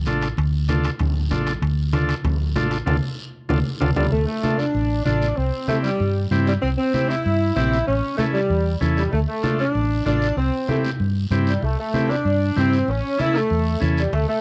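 Cumbia in D minor at 192 BPM, this passionate, driving excerpt opens with a round, dark hollow-body electric bass up front, a buzzy vintage combo organ with spring reverb, low-tuned thick-skinned congas heard from a distance, raspy guiro and ringing metal-shell timbales, which drop out as a band accent leads into a tight, smooth-topped saxophone section carrying the melody with light vibrato from 4.0 seconds over a Dm, C and A7 progression, all in a dry, close 1970s-style studio sound with light reverb.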